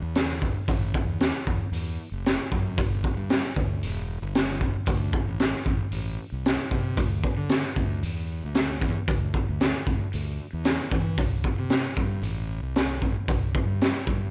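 A raw garage drum kit sits up front in this short indie rock excerpt, its high-tuned snare, punchy kick and hi-hat captured in a small room with a saturated, gritty character and a rolled-off top end. The kit enters at 0.2 seconds, just after a fuzz-drenched fingered electric bass that begins at 0.0 seconds and stays underneath it. The bass is growly and overdriven, its direct, amped tone ranging from E1 to E3. The tempo is a steady 114 BPM in straight 4/4, and the tuning sits slightly low at A4 = 436 Hz. A light reverb surrounds the pair, and the mood feels wistful yet upbeat as the single section runs to the cut at 14.3 seconds.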